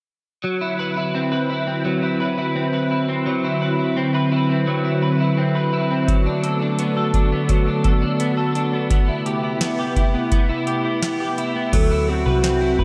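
Blissful and floating, this dream pop excerpt opens with an up-front, slightly broken-up electric guitar picking arpeggios through chorus and tape echo, joined almost at once by a warbling, nostalgic lo-fi pad holding detuned chords that drift from D13 to D6 and Cmaj7. A booming analog drum machine with a deep kick, crisp snare and metallic hats arrives at 6.1 seconds, and at 11.7 seconds an airy alto flute with vibrato takes a brief melody while a dark, round, foam-muted picked bass enters beneath. A lush hall reverb with a 2.5-second decay gives the music a big arena sound.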